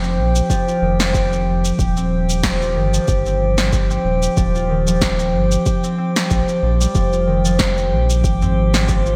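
Earthy and hypnotic, this organic downtempo excerpt moves at 93 BPM in 4/4 with a light swing on the sixteenths, cut from a longer piece. An up-front acoustic concert harp carries ringing, fingerpicked arpeggios through a delay, while a round analog bass sits underneath with a dark, nasal tone, tube saturation and sidechain pumping. The electronic shaker and punchy snare are layered and bathed in gated reverb, and an electronic kick drum with a deep, tape-warmed thump joins at 0.5 seconds. High above, a drifting glass-harmonics texture floats calm, glassy overtones with chorus and a long release, and a small udu taps briefly in the background at 8.4 seconds. The harmony moves from F5 to Ebadd9 at 1.8 seconds and settles on Fm at 7.0 seconds, all within bright 1980s-style digital production and a light reverb.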